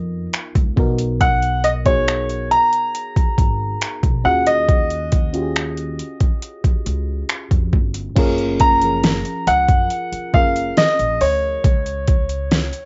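A home recording on cassette, its top end rolled off above 7.7 kHz and touched with light reverb, frames this longing, moody piece of contemporary R&B, cut from a longer work and moving at a slow 69 BPM in a straight 4/4. A bright, brilliant concert grand piano carries the melody up front, ringing between Db5 and Bb5 over a deep bass register. Beneath it, a soft, round FM electric piano with a dark, chorused shimmer and a faint noise layer supplies the accompaniment until about 11.7 seconds. A woody, pizzicato upright bass with steel strings anchors the low end, and an electronic, overdriven drum kit enters at 0.3 seconds with a knocking kick, fat snare, metallic hi-hats, finger snaps and crash cymbal, its small-room sound sitting prominently in the mix. The harmony drifts from Db13 through Abm9/Cb and Ebm11 before settling on Gbmaj7 at 8.2 seconds for a new section, then dissolves into a chordless close.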